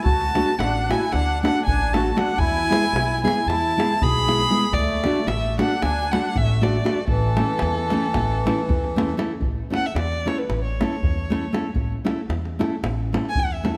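A dark, focused violin with vibrato and a smooth top leads this exuberant, festive Balkan wedding-band tune in 9/8, standing up front and taking a solo from 9.4 seconds to the end of the cut. Beneath it, a reedy, sweet accordion with light tremolo tuning plays a close, dry second line until 9.2 seconds, while a full-bodied, fingerpicked nylon-string guitar fills out the accompaniment. A woody pizzicato upright bass and a tight, saturated davul anchor the groove, all set in a moderate concert-hall reverb.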